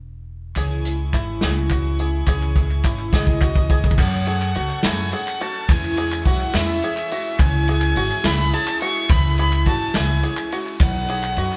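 A woody, thumpy upright bass opens this hopeful indie folk excerpt in 6/8, joined at 0.6 s by a shimmering, octave-doubled twelve-string acoustic guitar, a twangy banjo played with fingerpicks, crisp handclaps, distant gut-string chamber strings holding sustained chords, and a roomy unplugged drum kit played with bundle sticks whose fill drives the build-up to 4.0 s, while a dark, bowed fiddle with light vibrato carries the melody from 3.1 s, the whole band captured together in one room with a touch of reverb.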